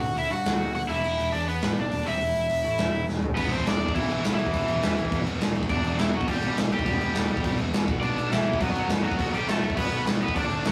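A cranked stack guitar leads from the start, carrying the melody with a bright, overdriven, picked tone placed up front, in an angry, urgent punk rock clip cut from a longer piece. A big rock drum kit, acoustic and natural with crashing bright cymbals, a medium-tuned snare and a punchy kick, opens in half time before a drum fill at 3.1 seconds pushes into the full straight drive of the next section at 3.4 seconds. A picked electric bass sits underneath with a growly, direct-and-amped edge, while a double-tracked distorted electric guitar joins at 0.9 seconds to play a riff further back in the mix. The harmony moves from D through E5 and C/E, then settles on E minor before shifting to B minor at 7.9 seconds. The whole take has the rough feel of a rehearsal room, with tube saturation, small room ambience and light reverb.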